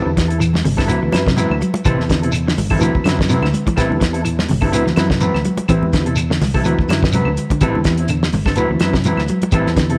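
Defiant and hypnotic, this afrobeat groove with a light swing rides a steady Am7 to D13 vamp, anchored by a round, punchy fingered bass and an up-front damped 70s drum kit with a fat snare and tight kick. A dark, fingered electric guitar plays clean stabs while a picked electric guitar spins arpeggios in the background, and a reedy, worn electric piano with fast tremolo sits further back, slightly out of tune. Grainy shekere, woody, saturated claves and very quiet, softly struck congas fill out the percussion, all in a light, small-room space.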